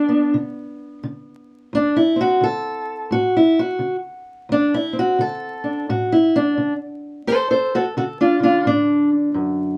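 A crackling, vinyl-worn sound with light reverb frames this short, swaggering and soulful acoustic country blues cut from a longer piece, where a dark, woody, boxy parlour steel-string guitar with old strings, fingerpicked and up front, plays alone from 0.0 to 9.8 seconds at 87 BPM with a swung feel in D mixolydian, moving from a rootless G to D7 at 1.7 seconds.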